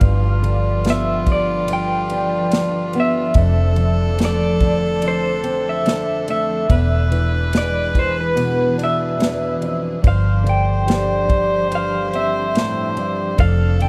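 A slightly broken-up electric guitar through a small old amp carries the melody with tremolo, its compressed, lo-fi tone giving this intimate, reflective acoustic folk-pop ballad its character. Beneath it, a clear viola adds a nasal, earthy second line with light vibrato, while a fingerpicked acoustic archtop guitar supplies accompaniment, with audible finger squeak. A rich studio string section holds smooth, even sustained chords in the background. A foam-muted fingered electric bass sits round and dark in the low end, and an airy natural country drum kit sits up front, with punchy kick, medium-tuned snare and ride cymbal in a polished studio room. Every part plays across the full 13.9 seconds of this fragment of a longer piece, moving through G7, Dm7/F, E7 and G7sus4 in a dark, warm production with light reverb.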